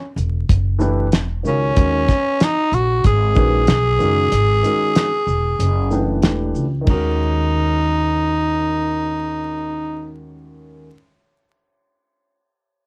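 A dry, crackly home cassette recording carries this nocturnal, cool jazz-hop cut from a longer piece, where a raspy, breathy growling tenor saxophone sings the melody up front over woody pizzicato upright bass and a swung, cloth-damped thuddy drum kit with a fat snare, dark cymbals and gritty tape saturation that stops at 7.1 seconds, while a mellow, dark concert grand piano enters at 0.8 seconds to comp beneath, with a break running from 4.3 seconds.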